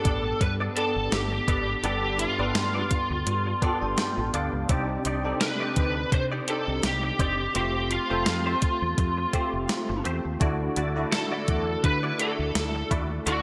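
Opening at once with a dark, overdriven lead guitar carrying the melody over a bell-like tine electric piano and a twangy, scooped clean guitar riff with digital delay, this glossy, nostalgic 1980s-style pop excerpt in G mixolydian at 84 BPM with a light 16th-note swing is joined at 0.1 seconds by a round, punchy fretless bass with lush chorus and a thumpy, sampler-style drum machine with a fat snare and gated reverb, while ensemble chorus coats the two guitars and the piano, the piano takes a fill from 3.3 to 4.7 seconds, and plate reverb frames the bright digital production as the chords move through Gadd9, Cmadd9, Fadd9 and Dadd9.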